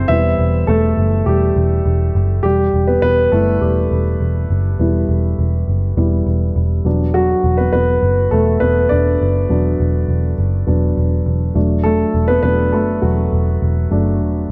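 Driving and dramatic, this piano-driven pop passage in E minor moves at 102 BPM in a straight 4/4, cut from a longer piece. An up-front grand piano carries a solo across the whole span, with the harmony shifting from Em to Bm/E at 6.9 seconds. Beneath it, a vintage muted picked electric bass sits low and close, its amped, foam-muted tone round and punchy, all within a dark, warm production touched by light small-room reverb.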